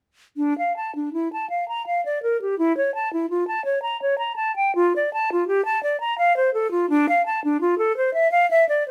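Set in a moderate studio reverb, this short, solemn passage cut from a longer baroque-style classical fantasia features a solo concert flute, pure and hollow with tongued notes and vibrato, sitting up front as it plays alone from 0.4 to 8.9 seconds in a grave, rubato triple time.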